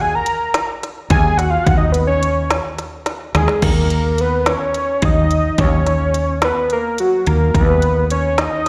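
Driving and brooding, this progressive instrumental band piece moves in a straight 7/8 at 214 BPM in eighths, in Eb minor, with an up-front organic electronic drum kit arriving at 0.3 seconds: its deep kick, woody snare and smooth hats carry overdrive and slapback echo, and a drum fill at 3.1 seconds leads into a new section. A fat analog synth lead takes a solo from the start, its detuned sawtooth and square-wave tone with a sub octave warbling through chorus, vibrato and slapback echo, while a round, hollow-body fretless electric bass enters at 1.1 seconds on a dark, direct Eb. The cut from a longer piece sounds like a live gig heard through the venue's PA, with light recital-hall reverb and digital ambience.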